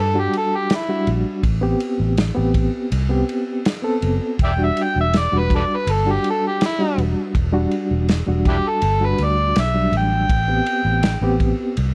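A straight-eighth soul blues groove in 4/4 is carried by a small-room drum kit with a tight kick, a medium-tuned snare and dark ride cymbal, under a round, foam-muted fingered electric bass that sits up front. An overdriven harmonica plays a gritty, jazz-style solo throughout this brooding, soulful excerpt, colored with light vibrato, scooped notes and tongue slaps. A clean, reedy electric piano with fast tremolo comps over chords moving between Em9 and Am9, all in light reverb.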